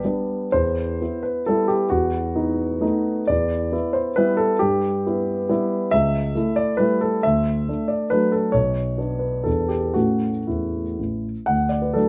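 Set in a moderate large-studio reverb, this short cut from a longer romantic classical piece features a solo dark, mellow grand piano with short sustain, placed up front and playing a graceful, rustic triple-time dance in 3/4 with dotted rhythms and rubato at 109-145 BPM, moving from E minor to D major at 5.9 s and closing on a D chord at 11.5 s.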